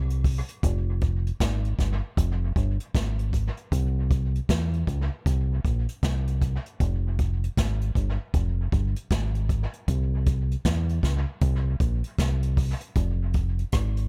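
A swung sixteenth-note groove in 4/4 carries this laid-back, meditative roots reggae passage, cut from a longer piece, where a dark, round fingered electric bass sits up front from the start and a brushed jazz kit joins at 0.1 s, its boomy kick, medium-tuned snare, rim clicks and hi-hat treated with analog delay in a dry, echo-heavy mix.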